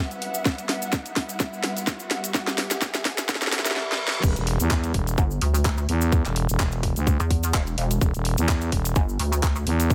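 A dark, high-passed digital ambience frames this swaggering, aggressive bass house excerpt, which opens on a build-up of a deep, moody sawtooth pad under a filter sweep, lush bowed strings, a drum fill, a background cabasa and a rising riser with a reverse cymbal, all over an Emadd9 chord. At 4.2 seconds the drop hits with a growling, thick FM bass, joining the overdriven drums up front: a tight kick, present since 0.5 seconds, and a garage kit with a cracking snare, handclaps, hi-hat and crash. A heavy, detuned pluck wobble bass joins at 5.2 seconds, its saturated pulse pumping against the kick.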